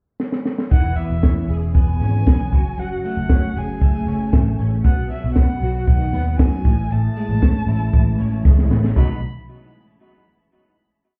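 Breezy, youthful jangly indie pop that sounds heard muffled through a wall, with club ambience and a small room around it. A dry, punchy cocktail kit with dark cymbals and a high-tuned snare opens with a fill at 0.2 seconds and drives a dance-floor beat with off-beat open hats, while a round, foam-muted picked bass plays driving eighth notes beneath it. A clean, compressed twelve-string electric guitar shimmers with ensemble chorus in a fingerpicked roll pattern, and a single close, warm bowed violin sings a motif-based melody with vibrato and portamento before everything settles onto a final chord at 9.0 seconds.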